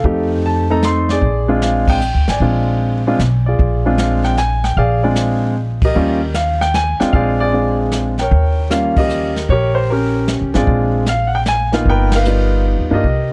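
A warm, up-front concert grand piano carries the melody in this sophisticated, swinging jazz piano trio, cut from a longer piece and moving at 152 BPM in a lilting 3/4 swing in Bb mixolydian, with harmony that passes through F7, Bb7, Eb and a closing G7alt. A woody pizzicato upright bass sits close beside it, while a brushed drum kit with dark cymbals, a boomy kick and an airy small-room sound stays lower in the mix. All three play together from start to finish under light reverb, and the band hits shared accents at 1.8, 5.8, 8.9 and 12.1 seconds.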